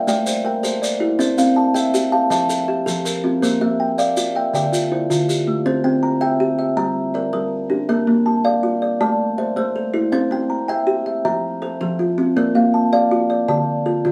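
Southern African traditional music in an mbira-style interlocking cycle, this hypnotic, rippling excerpt moves at 107 BPM in 12/8 in C mixolydian, with two kalimbas playing arpeggios throughout. One has a dark, smooth, woody tone from a solid board and thumb pluck, while the other is a mellow, soft hollow-box instrument played with the fingertips; both ring up front. Grainy maracas join at 0.1 s and stop at 5.5 s, and the whole is heard from further back in a small room with moderate studio ambience.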